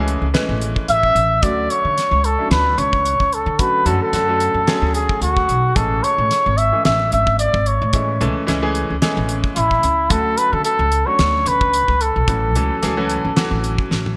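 A bright 1980s-style digital production with a moderate plate reverb frames this short piece of electric jazz fusion, cut from a longer work, with a bright, soaring mood and a light sixteenth-note swing over chords moving between Amaj7, Dmaj7 and A6. A cup-muted trumpet carries the melody from 0.9 seconds, veiled and mellow with vibrato and digital delay, while a clear concert grand piano with subtle chorus supplies accompaniment and a woody pizzicato upright bass anchors the low end. A damped 70s drum kit with a fat snare, tight kick and gated reverb sits up front, closing with a drum fill at 13.9 seconds.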